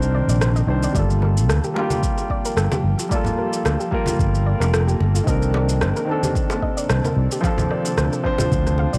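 Wistful and smooth, this sunset chillout excerpt in G minor moves at 111 BPM with a gentle sixteenth-note swing. An up-front grand piano, roughened by 12-bit sampler grit and analog delay, accompanies chords that move from Cm9 to Gm9 and Dm7, while an ethereal, airy pad sustains detuned chords very quietly in the background. A growly, punchy fretless electric bass holds the low end, an overdriven electronic shaker and rim click tick along, and a soft, round pluck plays chorused arpeggios in the background. A deep, overdriven electronic kick enters at 0.9 seconds, and bright, hard-handed bongos and congas join at 1.2 seconds, the mix captured as a dry, gritty cassette-tape recording.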